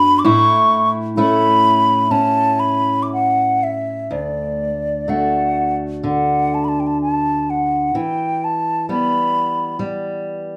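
A moderate studio reverb gives this short cut from a longer Celtic folk piece the feel of a band playing live together in one large room. A hollow wooden flute carries the melody up front, its airy, woody tone touched with vibrato, tongued notes and lifted highs. Beneath it, a dark, fingerpicked steel-string acoustic guitar provides accompaniment, also close and present, reaching down into deep bass notes. The pace is slow and rubato in 4/4 at around 57-66 BPM, in D major, moving through A, then D at 4.1 seconds and Em at 7.9 seconds. The mood is pastoral and nostalgic, and the flute falls away at 9.8 seconds, leaving the guitar to ring on briefly.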